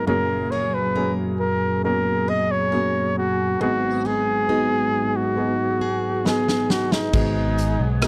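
A clear, up-front flugelhorn carries the melody with a pop-style vibrato in this tender, heartfelt pop ballad excerpt. The tune moves at a slow 68 BPM in straight 4/4, tuned to A4 = 444 Hz. A worn, woody upright piano with a slightly detuned, short-sustaining tone plays the accompaniment. Beneath it, a lightly overdriven tonewheel organ holds sustained chords through a slow rotary speaker, with audible key click. A picked steel-string acoustic guitar with old strings and a full-bodied dreadnought sound plays arpeggios in the background over a harmony that moves from F#add9 to G#m7. A huge arena drum kit with a boomy kick arrives at 6.3 s with a fill, and a bright fretless electric bass with ensemble chorus joins up front at 7.1 s, all set in a dry, close 1970s-style studio sound with light reverb.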